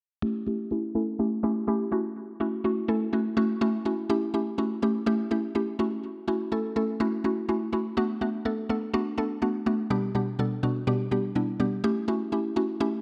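A straight 4/4 pulse at 124 BPM drives this bittersweet yet energetic pop cut from a longer piece, carried entirely by a solo mallet-like FM synth pluck, woody and round with a noise layer, fast attack and short decay, spanning B2 to A4 up front through chorus, phaser and a low-pass filter that sweeps during the opening 4.1 seconds, cycling A7 and F#m7 before moving through Bm7 and G/B back to A7, all within a lush hall reverb and a dark production.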